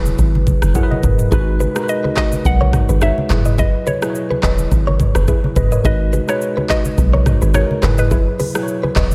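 A light reverb gives this sultry, mellow afrobeats excerpt a soft sense of space, with the produced electronic drum kit sitting up front: a knocking kick, smooth hi-hats, handclaps, rim clicks, shaker and toms over a gently swung 4/4 groove. Beneath it, a deep log drum bass supplies round, dark, percussive low notes that strike fast and decay, while low-tuned congas with a thick skin sit in the background. A worn, slightly out-of-tune tine electric piano, heard through a combo amp with analog chorus, carries the accompaniment and plays a short fill from 0.5 to 1.3 seconds. At 1.3 seconds a bright, scooped, compressed clean electric guitar, recorded direct, enters with a picked riff washed in spring reverb and diffuse ambient delay. On top, a woody, mallet-like synth pluck sings the melody with chorus and diffuse ambient delay, as the harmony sways between F#9sus4 and G#m7.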